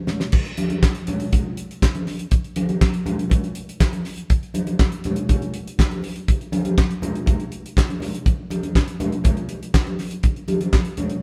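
A straight 4/4 disco groove at 121 BPM drives this danceable percussion passage cut from a longer piece, opening with a brief drum fill before a dry, damped 70s kit of tight kick, fat snare, hi-hat, handclaps and dark crash cymbal runs to 11.2 seconds alongside ringing, medium-tuned congas played with soft hands, the band sounding live together in a moderate stone room.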